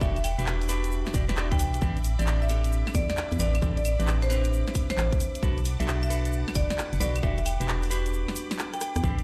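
A large studio reverb and the boom of a big sound system in a bare room frame this late-night, moody slice of two-step UK garage, cut from a longer piece and swung on the sixteenths. Up front, a hollow, organ-like FM bass with a fast, decaying attack and tube saturation anchors the low end, joined by a tight, tape-warm electronic kick. From 0.2 seconds a layered garage kit adds a cracking snare, rim clicks, claves, handclaps and hi-hat, while a grainy egg shaker sits in the background. A dry, close-miked marimba struck with hard mallets carries the woody, bright melody through a delay, and a dark, clean picked electric guitar adds stabs, also with delay. Behind them a silky vintage string machine holds soft chords with ensemble chorus and sidechain pumping, moving through Em9, Am11 and Bm7 and back to Em9, with a break at 8.1 seconds and a short drum fill at 8.7 seconds.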